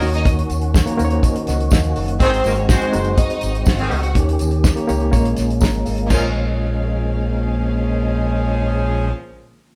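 Disco at 123 BPM in Bb minor, this driving, glamorous excerpt sets a punchy, overdriven fingered bass and a dry, fat-snared 70s drum kit up front (the drums stopping at 6.2 s) beneath lush, bowed strings, smooth pop-style horn stabs, a fat tonewheel organ with key click and slow rotary speaker, a reedy, slightly out-of-tune electric piano with fast tremolo that plays a fill from 0.7 to 2.2 s, and a jingly tambourine in the background, all moving through Ebm7, Ab7, Eb7 and Bbm7 in a live-room sound with moderate reverb.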